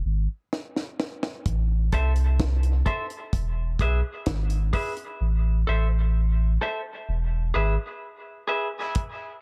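Spacious and heavy, this dub reggae excerpt moves at a slow 64 BPM in straight 4/4, set in A harmonic minor with tuning at A4 = 438 Hz. A round, sine-like sub bass opens at 0.0 seconds, sitting up front with deep, sustained notes between E1 and C2. The acoustic drum kit arrives with a fill from 0.5 seconds; its dry, dark sound pairs a tight kick and a high-tuned snare with hi-hat, placed close and forward in the mix. From 1.9 seconds a semi-hollow electric guitar adds clean, bright, picked accompaniment between G#4 and E5, compressed and thinned by a high-pass filter, with dub echo trailing its notes. The harmony sways between Am and E, and the whole excerpt sits in an echo-heavy studio reverb that gives it a roomy, cavernous depth.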